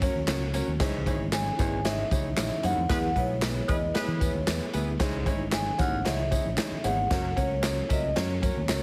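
Urgent and passionate, this uptempo 1960s-style soul passage, cut from a longer piece, moves in a straight 4/4. A vibraphone played with soft mallets carries the melody, its metallic, ringing tone shimmering with slow motor vibrato and sitting forward in the mix. Beneath it, a baby grand piano with short sustain supplies accompaniment, a very quiet tonewheel organ holds sustained chords through a slow rotary speaker, and a round, dark fingered electric bass anchors the low end. The swinging big-band drum kit sounds airy and polished, with a punchy kick and a medium-tuned snare up front alongside hi-hat, while tambourine and group handclaps add a small-room sparkle. From 0.8 s a breathy, whispered baritone saxophone plays a riff in the background, and a tight vintage horn section with light vibrato adds a second line from 2.9 s during a band accent. Light reverb and studio ambience surround the parts, and heavy multiband compression gives the whole mix a dense radio sound.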